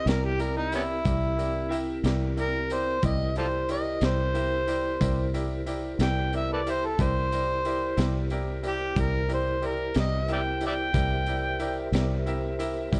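An overdriven, amplified harmonica leads this gritty, rollicking slow blues, soloing up front with vibrato, scooped notes and tongue slaps, its soft attack trailed by a slapback echo until it drops out at 11.9 seconds. The tempo sits at 61 BPM in a straight 12/8 over a C7 chord in C mixolydian, and the clip is cut from a longer piece. A fingered electric bass holds a round, dark low C up front, while a raw garage drum kit of hi-hat, kick and snare adds a punchy kick, a high-tuned snare and a saturated, muffled, lo-fi sound with a rolled-off top. A bright grand piano plays intimate, brilliant accompaniment with long sustain and audible action noise. Behind them, a mellow, flute-like tonewheel organ holds soft, clean sustained chords through a fast rotary speaker, all captured in a dry, close 1970s-style studio recording.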